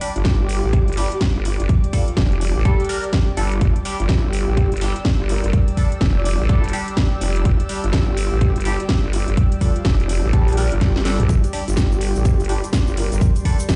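Gritty and aggressive, this bass house excerpt rides a swung sixteenth-note groove. A nasal, wobbling bass with a vowel-like formant sweep sits up front, roughened by overdrive and chorus and pumped by sidechain compression. A punchy, tape-warm electronic kick drives it from 0.3 seconds, layered with a house kit of cracking snare, metallic hi-hats and toms that rolls through a drum fill at 10.8 seconds. Band-passed, wave-folded chord stabs ring with phaser, delay and a touch of chorus, while an airy, breathy pad swells in slowly beneath them, both breathing with the sidechain. A soft, flute-like synth lead with vibrato drifts in the background through delay and ensemble chorus, and a grainy, bright tube shaker enters at 11.3 seconds. The whole mix sounds played back through a big sound system in a bare room, its top end dulled above 10.5 kHz.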